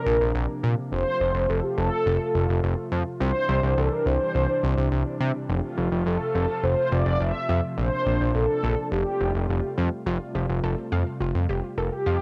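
Wistful yet bright, this short pop excerpt pairs a round, brassy synth lead, treated with chorus and tape echo, with a smooth, warbling pad and a fat, thick analog bass sitting up front, before a punchy unison pluck joins at 10.1 s with wave-folded arpeggios, the whole home cassette recording lightly touched by reverb.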